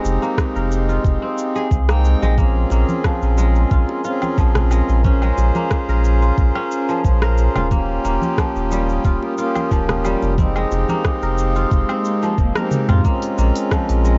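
Organic downtempo at 90 BPM in Bb dorian, mystical and hypnotic, where a reedy, breathing pedal harmonium sits up front with tape echo over a deep, round sub bass and a soft electronic kick that enters at 0.4 seconds, while fingerpicked kora arpeggios ring through a low-pass filter, a warbling, detuned lo-fi pad hangs in the background with chorus, a crisp-hatted drum kit adds rim clicks, shaker, toms and woodblock, dry congas and bongos join at 2.4 seconds, and a very quiet electronic swell and drum fill lead into a brief new section at 13.0 seconds, all under a dark production in this excerpt from a longer piece.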